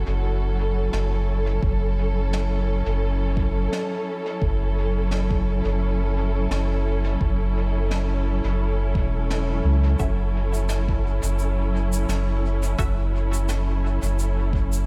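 This hazy, spacious ambient dub piece, cut from a longer work, opens at 0.0 seconds with a dark, lush string section holding sustained chords up front, its woody, bowed ensemble tone carrying gentle vibrato and a smooth top, alongside a soft, round sub bass given tube saturation. Resting on an F#m7 chord in F# minor, it moves at 86 BPM in 4/4 with a light 16th-note swing. A natural-sounding brushed snare and shaker join at 0.9 seconds, sitting quietly in a studio room and trailed by dub echo, and an electronic kick drum with a layered, produced weight arrives soon after. At 10.0 seconds a faint, filtered chord stab appears in the background, muted and detuned with a plucked filter, phaser, dub echo and vintage 12-bit sampler grit, before dropping out at 12.9 seconds. Light reverb and small-room ambience frame the whole mix.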